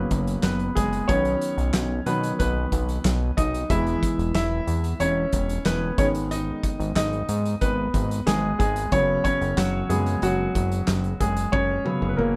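A clear baby grand piano takes the lead from the start alongside a nasal, detuned sawtooth bass and a loose acoustic indie drum kit with a punchy kick and handclaps in this hopeful, piano-driven pop excerpt at 92 BPM, moving through F#sus4, B, E and G#m in a moderately reverberant live room before a drum fill at 11.5 seconds.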